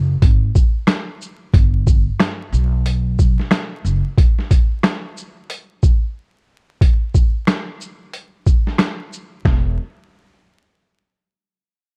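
A swung boom-bap groove at 91 BPM in 4/4 drives this soulful, confident hip-hop excerpt, tuned slightly flat to A4 = 438 Hz. A gritty, pitched-down sampler kit, compressed and up front with a thumpy kick, medium-tuned snare, rim click, hi-hat and shaker, runs from 0.2 to 9.6 seconds with a brief break near 6.2 seconds. A woody, dark pizzicato upright bass sits low and close over the first 4 seconds and returns briefly at 9.4 seconds, all in a dry mix dusted with vinyl crackle.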